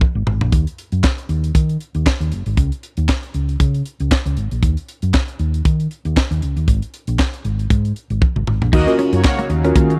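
Funky and late-night, this early-eighties boogie funk excerpt in Eb minor moves at 117 BPM with a swung 16th feel, opening on a tight, up-front drum kit with a high-tuned snare, handclaps, hi-hat, toms and crash, and a drum fill. A round, dark hollow-body bass joins at 0.2 seconds to carry the groove alone with the drums over an Absus2 that gives way to a chordless stretch. After another drum fill, the music shifts to Ebm9 at 8.7 seconds, where fat, warbling analog synth brass with chorus and a compressed, picked guitar riff soaked in lush chorus arrive, joined at 8.9 seconds by a bell-like tine electric piano. A shimmering pulse-width pad settles in underneath at 9.0 seconds, all captured in a dry, close 1970s-style studio sound.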